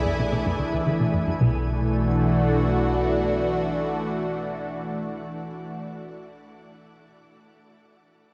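Mysterious, cosmic space music opens on a thick, detuned unison pad with chorus, phaser and shimmer reverb holding sustained chords up front, while a round, nasal analog pluck riff in the low register, a mellow, evolving analog drone bass and a sparkling granular texture in the background all sound together from the start, joined at 0.1 s by a dark, very quiet clean semi-hollow electric guitar playing arpeggios. The pluck and guitar drop away at 1.7 s, the drone carries on until 3.0 s, and the pad then rings on alone inside a wet plate reverb until 6.0 s.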